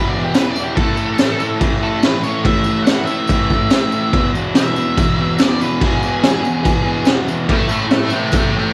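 Raw and swaggering, this short garage rock excerpt in E major drives along at 143 BPM in a straight 4/4, with an octave-fuzz lead guitar taking a picked solo high over a bright, double-tracked fuzz guitar riff, a gritty, saturated raw garage drum kit with a boomy kick, a high-tuned snare and crash cymbal entering at 0.3 seconds, and a jingly tambourine tucked in the background, all captured as a home recording on cassette with studio reverb.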